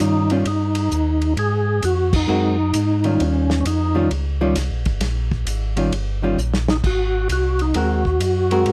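Bluesy and greasy, this soul jazz organ trio passage, cut from a longer piece, swings at 131 BPM in 4/4 over Eb9 and Ab9 chords. A fat, percussive tonewheel organ with key click, light overdrive, chorus vibrato and slow rotary speaker carries the melody up front, while a clean, hollow-body archtop guitar comps in a dark, picked voice and a round, mellow second organ lays down the bass through its own slow rotary. Set lower in the mix, a dry, muffled soul kit with dark cymbals and a tight kick hits a band accent at 2.0 seconds and a fill at 6.4 seconds, all captured with close, detailed microphones and light reverb.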